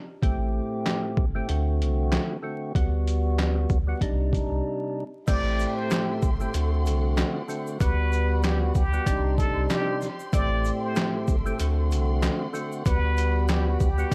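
Nostalgic and warm, this swung boom-bap hip-hop excerpt at 95 BPM in G major sets a fat, percussive tonewheel organ turning through a slow rotary speaker over a thick, saturated sub bass and a muffled, pitched-down sampler drum kit with a thumpy kick, handclaps and shaker; after a brief break at 4.6 seconds, a plunger-muted trumpet takes a bright, wah-wah jazz solo from 5.3 seconds, backed by distant bowed strings and a grainy tube shaker, in a dark mix dusted with vinyl crackle.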